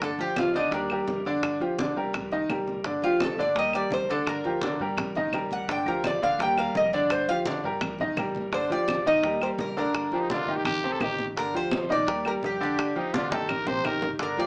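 A metallic, double-strung Cuban tres solos up front from the opening over clear, long-sustaining grand piano arpeggios, a growly pizzicato upright bass, low-tuned bongos and congas and woody claves in this nostalgic Cuban son and guajira in G minor at 169 BPM, before a raspy, growling trumpet takes a second line at 10.1 seconds and a drum fill arrives at 13.3 seconds, the mix carrying a small-speaker sound and moderate studio reverb.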